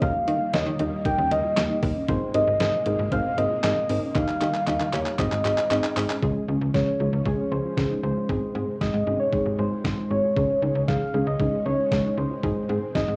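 A hazy home-cassette sound with small-room reverb frames this upbeat, wistful synth-pop excerpt in Ab major at 116 BPM, where an up-front, keys-like FM lead carries the melody through chorus, tape wear, analog delay and plate reverb over a soft, round, detuned pluck providing accompaniment. Beneath them sit a very quiet, full-bodied pluck tracing arpeggios, mellow string-machine cellos holding sustained chords in the background, and a snappy, metallic slap-like FM bass. A detuned 8-bit drum machine with a thumpy kick, snare, hi-hat and handclaps drives it all, rolling into a fill from 4.2 to 6.2 seconds before the harmony shifts toward Db and Dbsus2 in the second half.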